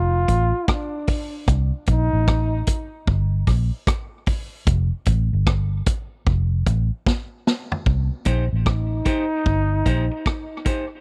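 Dub reggae with a hypnotic, meditative swing, cut from a longer piece and captured as a dry, close 1970s-style studio take in a small room. A vibrato-laden trombone carries the melody up front through tape echo, over a dark, round, foam-muted electric bass and a vintage drum kit with a punchy kick and rolled-off top, whose break ends in a drum fill at 7.1 seconds. At 8.3 seconds a clean, picked semi-hollow guitar adds hollow-body accompaniment, also through tape echo, shortly before the trombone returns.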